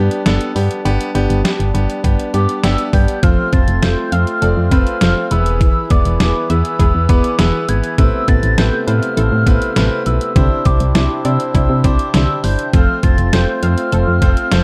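A punchy, round FM bass sits up front with a thumpy, detuned 8-bit drum machine in this nocturnal, cool synth-pop excerpt at 101 BPM, while a bright concert grand piano accompanies and a reedy, breathing pedal harmonium holds the chords. A hollow, woody clarinet-like synth lead with vibrato, chorus and tape echo carries the melody from 2.3 seconds, and a very quiet, lush, detuned sawtooth pluck adds arpeggios from 3.2 seconds over a progression moving from G through F, E, Amadd9 and Cadd9. The production is dark, with light reverb and a digital ambience.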